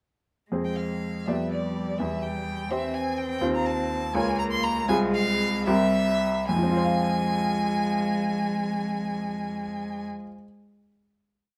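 Close, detailed microphones capture this short piano trio in a stone room whose moderate reverb lends the sound a sense of space. It is a complete, quick classical-period movement in F minor and 6/8, stormy and restless in mood, pulsing at roughly 71-86 dotted-quarter beats per minute with a freely pushed and pulled rubato. The bright baby grand piano carries the accompaniment, placing bass notes and chords on the beats across a span from deep C2 to F5, while the violin sings the melody up front with a focused, vibrato-laden tone high in its register. Beneath it, the rich cello plays a second line of independent inner voices and sustained chords, its bowing smooth and even within a narrow middle range. The harmony moves from F minor through a descending bass of inverted chords to a C7, and the music slows from 2.7 seconds before landing at 6.5 seconds on a long closing F minor chord that rings out until the piano's last sound fades at 10.4 seconds.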